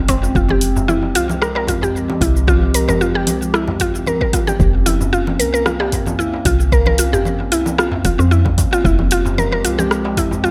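Warm and hypnotic, this organic downtempo excerpt moves at 113 BPM in 4/4 with a light sixteenth-note swing, set in F harmonic minor. A warbly, nostalgic pad holds sustained chords throughout, its lo-fi, wave-folded tone softened by chorus and its own reverb, and it breathes with sidechain pumping alongside a round, woody FM bass that pumps the same way. Up front, a mallet-like synth pluck spins percussive, full-bodied arpeggios treated with chorus and digital delay. The rhythm bed layers a produced deep house kit of congas, hi-hat, rim click and shaker with a punchy electronic kick, both in a small room, while a crisp, metal-shelled darbuka with a vintage, band-limited character sits in the background. The harmony rests on Fm, shifts to Bbmadd9/F at 4.6 seconds, and returns to Fm at 8.8 seconds, all wrapped in light digital ambience.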